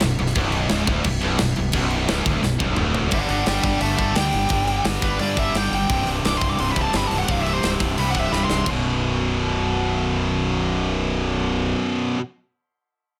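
Lightly reverberant and dense, this heavy metal excerpt feels relentless and aggressive, driven by a straight four-beat pulse. Up front, a tight distorted guitar with a bright, picked attack carries the riff, while two scooped, high-gain rhythm guitars sit in the background, one double-tracked and heard only through the opening phrase. Beneath them, a fingered electric bass recorded direct and amped adds overdriven fuzz to the low end, and a tight metal drum kit in a big room, with a medium-tuned snare, tight kick, hi-hat, toms and crash, stands forward in the mix. At 3.1 seconds, after a drum fill, a warm high-gain lead guitar takes a solo over chords moving from G5 to C5. At 8.7 seconds the solo and drums stop after a final fill, leaving the guitars and bass to hammer out the riff on B5 until the excerpt cuts off.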